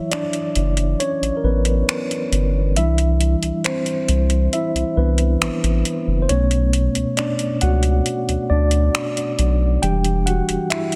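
Smooth and dreamy, this short contemporary R&B fragment, cut from a longer piece in a straight 4/4, drifts through a Dmaj7, Cmaj9, Bm9 and Em9 progression. A mellow tine electric piano opens at 0.0 seconds and carries a solo across the whole passage, its clean tone heard through the instrument's built-in speakers and sitting up front. A booming analog drum machine joins at 0.1 seconds, dry and electronic, with metallic hi-hats, finger snaps and a snare roughened by soft clipping. At 0.6 seconds a saturated sub bass arrives, deep and thick with a triangle-like tone, a fast attack and sustained notes low in the register. Light reverb surrounds the parts, and the dense, heavily limited modern master keeps all three instruments close and present.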